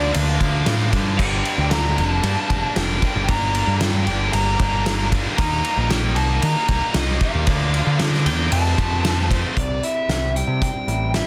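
Cathartic and angsty, this short cut of quiet-loud alternative rock in G minor drives at 115 BPM in a straight 4/4, with a dark, overdriven lead guitar carrying the melody over a bright, double-tracked distorted riff, a growling, round picked bass up front, and a loose, roomy drum kit with a fat snare, punchy kick and dark cymbals, until at 9.6 s the riff drops away and a slightly broken-up, lo-fi guitar with subtle chorus enters with arpeggios on a C chord, all in a dense, heavily limited modern master.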